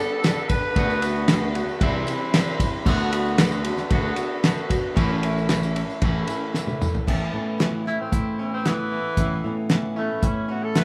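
Folk rock with a heartland rock lean, this nostalgic, warm fragment of a longer piece rides a straight 4/4 groove from a cloth-damped, thuddy drum kit with a fat snare and dark cymbals, a growly fingered electric bass, and a tambourine jingling quietly in the background. A picked acoustic archtop guitar and a very quiet, reedy accordion holding sustained chords fill out the texture, while a twangy, clean electric guitar plays a riff through spring reverb. A roomy tenor saxophone with light vibrato sounds a brief phrase at the start, then, after a drum fill, returns at 7.9 seconds for an up-front solo, all captured with the rough, small-room feel of a home demo.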